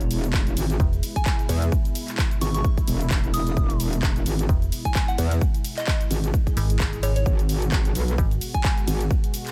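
A swung 130 BPM groove in 4/4 drives this aggressive, bouncy bass house excerpt, where a punchy, up-front electronic kick enters at 0.3 s over a layered dance kit of cabasa, handclaps, hi-hat and ride cymbal, a saturated metallic wobble bass pumps beneath, a mellow, decaying FM bass joins at 0.8 s, a soft, pure synth bell with chorus and delay sits in the background, a detuned sawtooth pad evolves through a resonant filter swell, and an electronic swell sound appears at 6.5 s, leading into the harmony's move from E to G#m7 at 7.3 s.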